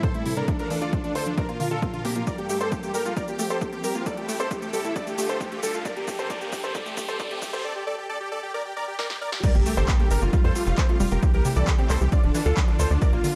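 A straight 4/4 pulse at 134 BPM drives this uplifting trance passage, cut from a longer piece, with a punchy, layered electronic kick up front and a big-room dance kit adding a punchy snare, handclaps, crisp hi-hat, shaker and crash cymbal, plus drum fills during the build-up. Driving and emotional, it opens with a build-up over a minor progression centred on Dm, where a filter sweep moves across a detuned unison pluck spinning arpeggios in the background. A huge, thick supersaw carries the lead melody with vibrato and tape echo, while a clear baby grand piano traces a second line through digital delay, and a bright, bowed string ensemble holds sustained chords behind them. A riser enters at 4.6 s, and the drop lands at 9.4 s with an impact. A tight, mellow sawtooth sequencer bass joins at 9.5 s, and the synths, piano, strings and bass all pump against the kick under a dark production with light reverb.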